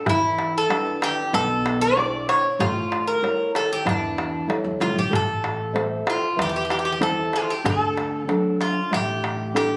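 The Greek bouzouki opens this short cut from a longer Greek folk piece, its picked double strings ringing metallic and up front with some octave-doubled courses as it carries the melody. From 0.1 seconds a dark, thumb-plucked nylon-string guitar supplies classical-style accompaniment, a woody, thumpy upright bass on steel strings holds the low end in pizzicato, and a crisp, deep metal-shell darbuka adds close, dry percussion. The mood is moody and cool over a straight, even pulse, with the harmony moving from E7 to A and then to Am and D as a second passage begins at 5.1 seconds. A moderate plate reverb gives the parts a lingering tail, and the sound has the roomy, compressed character of a phone recording made in a club. The bouzouki, guitar and bass play through to the cut at 9.8 seconds, and the darbuka stops just before it at 9.7 seconds.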